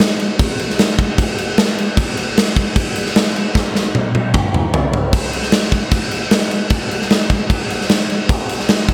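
Set in a bright stone room with light reverb, this aggressive, heavy rock fragment features an up-front acoustic drum kit alone, with punchy kick, medium-tuned snare, toms and a crash among its bright cymbals, driving a straight 4/4 feel and playing a fill from 3.5 to 5.1 seconds before the next section begins.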